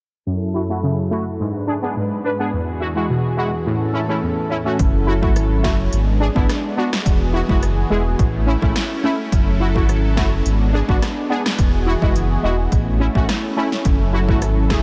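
A brassy, wave-folded synth brass stab and a smooth, detuned analog pad open the piece together at 0.3 seconds, the stab up front with its bright, fast-attack hits and the pad sustaining chords beneath it with chorus and sidechain pumping, while a filter sweep runs from the start through to 4.8 seconds. This is a tough, hypnotic dancehall track in F# minor at 106 BPM in a straight 4/4, cut from a longer piece, cycling through F#m7, G#dim, Eadd9 and A. At 4.8 seconds a deep sine sub bass with an octave layer arrives up front, full and sustained, alongside a deep house drum kit. The kit is layered and overdriven, with a punchy kick and snare, rim clicks and smooth hi-hats sitting prominently in the mix. Light reverb gives the whole a digital ambience through to the end at 14.8 seconds.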